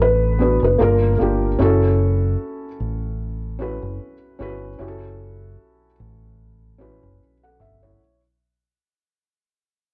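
Swung sixteenths at a relaxed 75 BPM give this hazy, reflective lo-fi hip hop excerpt in F# phrygian its gentle lilt, as a felt-muted upright piano with audible action noise plays a brief melody until 1.2 seconds through tape echo, while a second muted piano carries the chords through a cassette tape effect and a round, dark dub electric bass sits up front, all in a small, lightly reverberant room that fades out across its 8 seconds.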